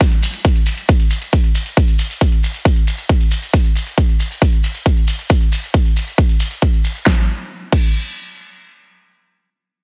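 A straight trance pulse drives this bittersweet, soaring fragment, cut from a longer track. Out front sits a punchy, overdriven electronic kick, layered and produced, carrying the most weight in the mix. Behind it, a big-room dance kit adds a huge snare, hi-hats and crash cymbal, also overdriven, with low-pass filtering on the snare, hats and cymbals and a filter sweep running across the drums until 7.1 s, where the music moves into a new section. Grainy, mellow maracas sound distant, as if heard across a large room, and drop away at 7.0 s, while the kick and kit carry on to 7.9 s. The overall sound is dry, with very little reverb, keeping the beat tight and forceful.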